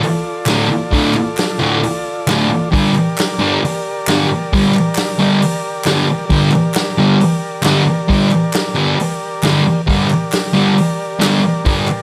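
A thick, double-tracked fuzz guitar sits up front in this raw, gritty garage rock excerpt, picking a distorted riff in its low register from 0.5 seconds over a straight 134 BPM pulse in 4/4, moving from D minor to G minor. Beneath it, a reedy, overdriven combo organ holds sustained chords with heavy vibrato and a subtle chorus, while a vintage acoustic kit with a punchy kick, medium-tuned snare, hi-hat and rolled-off top drives things along. Crisp group handclaps add a human touch, and light reverb gives the whole a small-room feel.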